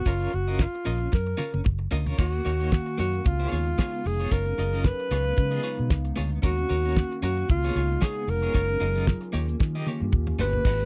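Disco at 113 BPM with a sultry, danceable swing: a mellow, subtoned alto saxophone sings the melody up front over a fat-snared, damped 70s drum kit, a round, punchy foam-muted fingered bass, and a slightly broken-up electric guitar with tremolo, while a warbly, nostalgic tape-like pad drifts in behind them at 2.6 seconds, all captured in a dry, close 1970s-style studio sound, with drum fills closing each section over F#maj7–D#m7–C#7 changes.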